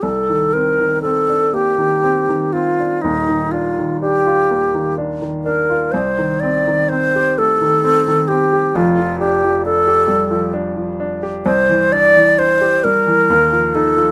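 Wistful and hazy, this impressionist classical duo drifts in a rubato 3/4 at roughly 59-68 BPM in C dorian, taken from a longer piece. An airy alto flute with vibrato and tongued notes carries the melody up front, while a clear, polished baby grand piano accompanies beneath it through harmonies such as Cm9, Ebmaj9 and F69, settling on an unresolved Ebsus2. Close, detailed microphones and a light reverb give the pair an intimate, present sound.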